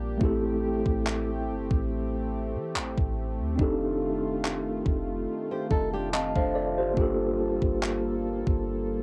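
A clean 12-bit digital drum machine sets a slow 71 BPM groove in 4/4 with a light 16th-note swing, its thumpy, sampler-style kick and handclaps entering at 0.2 s and sitting up front with a small-room, tape-softened character. This contemporary R&B excerpt feels sensual and moody, moving through Am7, F13 and Gm9. A mellow tine electric piano carries the accompaniment close to the listener, sounding clean as if through its built-in speakers, while a detuned sawtooth analog pad holds smooth, soft-attack chords with chorus and a sidechain pumping motion. Underneath, a soft 808-style bass gives deep, round, sine-like notes with a fast attack that decays into darkness. From 5.5 s to 6.9 s a flamenco guitar adds brief thumb-plucked arpeggios, its acoustic tone carrying audible finger squeak. The whole excerpt has the intimate feel of a home cassette recording in a modest booth, with tape coloring the drums, electric piano, pad and guitar.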